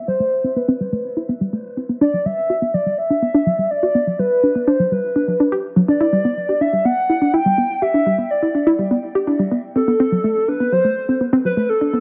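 A lo-fi, vintage haze hangs over this short excerpt of cerebral, melancholic IDM, set in a moderate echo chamber whose reverb gives the synths a roomy tail. A dusty, full-bodied pluck sits up front playing arpeggios throughout, its detuned triangle and sawtooth tone flecked with a noise layer, chorus and tape echo, while a filter sweep runs across it for the whole 12 seconds. Above it, a warbling, nostalgic lead carries the melody, a sustained square and sawtooth voice with vibrato, subtle chorus and tape echo that keeps it slightly wavering. The harmony moves through Am9, Gmaj7, Em7 and D6/F#, giving the passage a wistful, unresolved drift in straight 4/4. The mellow pluck and the vintage lead stay side by side from start to finish, creating a hazy, reflective atmosphere.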